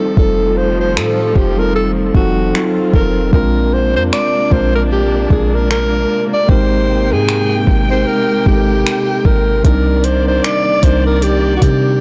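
A breathy alto saxophone leads this moody, longing contemporary R&B passage, its whispered, jazz-style solo line sitting up front with vibrato, a soft attack and a touch of delay. Beneath it, a mellow tine electric piano plays clean, warm accompaniment through built-in speakers, while a dark studio string section holds lush, bowed chords with expressive vibrato and a smooth top. At 0.2 seconds a round, sine-like 808-style bass and a smooth, electronic drum kit arrive together. The kit pairs finger snaps, metallic hi-hats and a soft kick, with gentle clipping on the snare and a small-room sound, all riding a relaxed 16th-note swing. The harmony drifts through lush extended chords, from F9 and F7b9 to Bb9, Abmaj9 and Cm9, and the dry, overdriven recording lends this fragment of a longer piece a blown-out, intimate grit.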